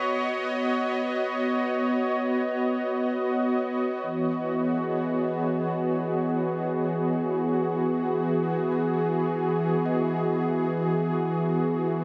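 In free time, this luminous, weightless ambient fragment, tuned to A4 = 444 Hz and moving from Badd9 to Emaj9 at 4.1 seconds, rests on a detuned sawtooth analog pad up front, smooth and bright with chorus and tremolo, while a twangy, clean pedal steel guitar with delay sings a brief background melody until 3.1 seconds, and a very quiet felt-muted upright piano enters at 4.0 seconds with intimate, mellow arpeggios and audible action noise, all held in a wet cathedral reverb with a 5.4-second decay.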